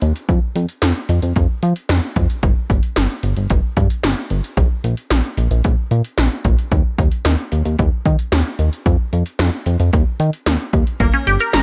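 Melancholic and cool, this synth-pop excerpt, cut from a longer piece, moves at 112 BPM in a straight 4/4. A chorused synth bass carries the low end from the start, its glossy, nasal pulse-wave and sawtooth tone dark and up front, with a filtered pluck on each note before it sustains. Alongside it, 80s electronic pad drums bring a punchy kick, gated snare, metallic hi-hats and crash cymbal, their analog sound overdriven and caught in a small room. For most of the passage the harmony stays unanchored, until a resonant blip pluck arrives at 11.0 seconds with bright, squelchy arpeggios treated with phaser and slapback echo, just as the music settles on G minor. The mix is dry and close, with little reverb, keeping every part near the listener.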